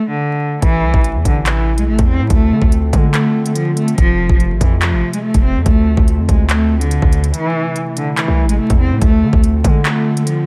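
Hip hop drill with a menacing, dark half-time feel, cut from a longer piece, opening on a single bowed cello whose smooth, vibrato-rich melody sits up front through a low-pass filter and tape echo, all over a bed of vinyl crackle. At 0.6 seconds a knocking electronic drum kit of kick, crisp hi-hats and handclaps arrives alongside a punchy, heavy 808-style bass with a sine body and noise layer. Behind them, a warbling, detuned lo-fi pad holds nostalgic sustained chords with chorus, phaser and reverb, and a brief break lands at 7.3 seconds.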